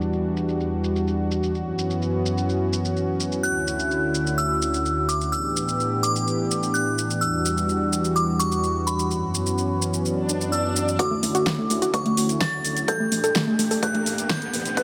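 A smooth, lightly reverberant mix opens on a warm analog pad holding sustained chords up front, its detuned sawtooth tone thickened by chorus, a touch of vintage 12-bit sampler grit and sidechain pumping. This excerpt of expansive, hopeful progressive house moves at 127 BPM in D major, with a deep house drum kit of overdriven hi-hat, shaker and fat snare placed up front from the start, the metallic hats and snare softened by low-pass filtering and a small room reverb. At 3.4 seconds a glassy, crystalline FM synth bell enters with a bright, high melody, its long release shimmering through chorus, phaser and tape echo. A swell at 10.2 seconds leads into a build-up from 11.0 seconds, where an electronic riser climbs alongside a soft, round pluck playing gently decaying arpeggios with chorus and tape echo. At the same point a punchy, overdriven electronic kick joins, and a dark, rumbling detuned saw bass sits deep in the background, pumping under the sidechain. 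The chords cycle through Em7, F#7sus4, Dmaj7 and A7sus4, giving the passage an open, forward-leaning lift.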